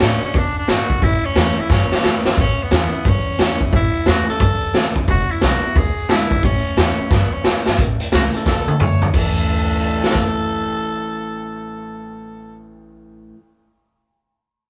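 Recorded as a band playing live in one room with moderate large-studio reverb, this upbeat, rowdy, swung rockabilly excerpt features a raspy, growling tenor saxophone solo over a bright, jumbo-bodied picked steel-string acoustic guitar and a woody, thumpy pizzicato upright bass in the background, while a saturated, boomy-kicked garage drum kit sits up front, throwing in fills at 7.1 and 8.5 seconds before falling silent at 10.3 seconds.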